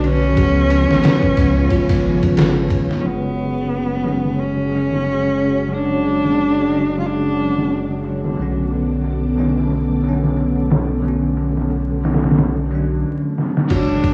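A bowed solo cello with rich vibrato and expressive portamento leads this dark, cinematic trip hop excerpt, its voice roughened by vintage 12-bit sampler grit and trailed by dub echo. It sings until 8.1 seconds and returns briefly at the close. At 90 BPM in 4/4 with swung sixteenths, a compressed, pitched-down sampler-style drum kit sits up front with a thumpy, muffled kick, a medium-tuned snare, and ride and crash cymbals, all overdriven and filtered. Beneath it, a round, soft dub sub bass with tube saturation anchors the low end. A bell-like tine electric piano with tremolo and a full-bodied string machine cello pad with ensemble chorus carry the harmony in F# harmonic minor through C#7, F#sus2 and Bm7. A delicate, tinkling music box with digital delay plays arpeggios in the background at the start and again at the end. A drum fill at 13.4 seconds leads into a very quiet electronic impact at 13.8 seconds, and the whole track is coloured by warbling cassette tape, pitch drift and vinyl crackle.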